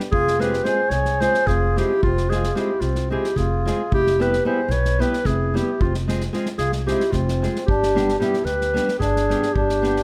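Bittersweet and fiery, this excerpt of Balkan wedding-band folk runs in a brisk 7/8 at 223 BPM (eighths), in F Hungarian minor, moving from Fm through Em/F before turning to G at 7.7 seconds. A mellow, soft-attacked clarinet leads up front in classical style with a slapback echo, over a reedy, round accordion second line, a woody, thumpy pizzicato upright bass on gut strings, and a small fingerpicked nylon-string guitar entering at 0.4 seconds. An unplugged drum kit played with bundle sticks drives it with a punchy kick and medium-tuned snare, all set in a moderate recital-hall reverb.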